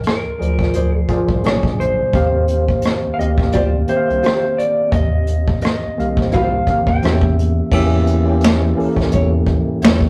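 R&B and neo-soul with a smooth, soulful mood at 86 BPM and a swung 16th feel, this rough rehearsal-room clip pairs a slightly broken-up, lo-fi electric guitar melody with spring reverb, which stops at 7.3 seconds, with a dark, up-front brush drum kit with punchy kick and finger snaps, a round, deep analog bass, a worn, slightly out-of-tune tine electric piano with light overdrive, and a fingerpicked classical nylon-string guitar adding a second line over chords such as Bb9 and Eb69.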